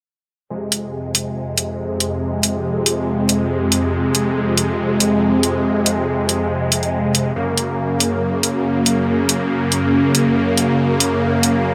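Huge, detuned supersaw chords open at 0.5 s with a phaser and a filter sweep, sustaining on F minor before shifting to G-flat at 7.4 s in this chaotic, heavy fragment of half-time wobble dubstep at 140 BPM in F phrygian. A bright, tape-warm electronic hi-hat enters at 0.7 s and sits up front alongside the full-bodied sawtooth chords. A moderate, lush hall reverb with a 2.1-second tail surrounds the mix.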